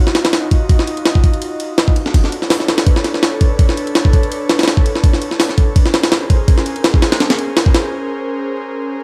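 Frenetic and dark, this short drum and bass cut from a longer jungle track builds tension across its nine seconds. A jungle sampler-style drum kit sits up front, its compressed, pitched-up breaks sounding gritty, with a thumpy kick, a high-tuned snare, hi-hat and ride cymbal carrying a slight swing on the sixteenths and the character of being re-recorded in a large room. Beneath it, a soft, breathy pad with a slow attack and long release holds sustained chords through a chorus effect, its detuned sawtooth and triangle tones blended with a noise layer, moving from Ebmadd9 to Bm9 at 2.1 seconds and Bbm9 at 5.8 seconds. The drums drop out at 7.8 seconds, leaving the airy pad alone for a brief break until the end. Light reverb and a veil of vinyl crackle give the whole passage a dusty, late-night atmosphere.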